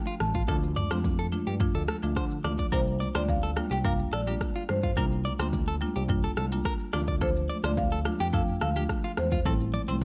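A straight afrobeats groove drives this sultry, hypnotic excerpt, built on an up-front electronic drum kit with a deep kick, rim click, shaker and toms, joined by very quiet, distant congas struck with hard hands, and a drum fill arrives at 9.5 seconds. A bell-like tine electric piano carries the bass through a phaser, while a dark, compressed clean electric guitar picks a riff through digital delay. Two padauk marimbas fill out the arrangement: one with medium mallets plays a boxy, woody melody, and a brighter, percussive one with medium hard mallets supplies accompaniment over chords moving from Dm through C7sus4 and back to Dm before landing on Am7.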